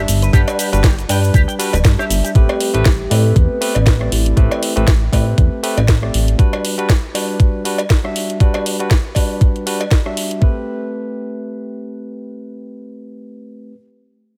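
A barky, bright tine electric piano through a combo amp opens this cosmic, sleek nu-disco excerpt, joined by a glossy, detuned synth bass that pumps against an overdriven, thumpy electronic kick until the bass drops out at 6.4 seconds. A twangy, scooped envelope-filtered guitar riff with lush chorus flickers briefly at the start, then a round, soft octave-layered synth lead with vibrato and tape echo carries the melody in the background from 2.4 seconds, over a layered house kit with a cracking snare, hi-hat, rim click and shaker plus a distant cowbell. The swung groove moves between Gmaj7 and Am9 in a dry, close mix, and the piano plays on alone after the drums fall away near 10.5 seconds.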